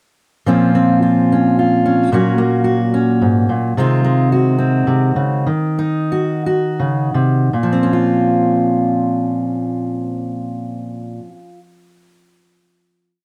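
In a straight 3/4 that slows from 3.8 to 7.5 seconds within a 76-110 BPM range, this heartbroken, intimate acoustic folk-pop ballad in Bb minor features a single fingerpicked steel-string dreadnought guitar, bright and full-bodied, sitting up front and playing a rolling arpeggio with audible finger squeak through Bbmadd9, Gb/Bb, Ab6/C and Ebm before settling on a final Bbmadd9 chord at 7.5 seconds that rings until 11.6 seconds in a moderate studio reverb and a dark production.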